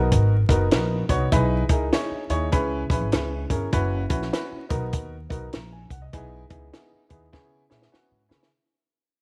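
A dry, up-front cocktail drum kit with a high-tuned snare and punchy kick drives this joyful, uplifting fragment of uptempo 1960s-style soul at 100 BPM in B major, swung in 4/4. An upright piano with long sustain comps through Bmaj7, Emaj7/B, C#m7 and F#7sus4 over a dark, woody pizzicato upright bass. The whole passage fades out under light small-room reverb and vinyl crackle, with drum and piano fills at 7.3 seconds.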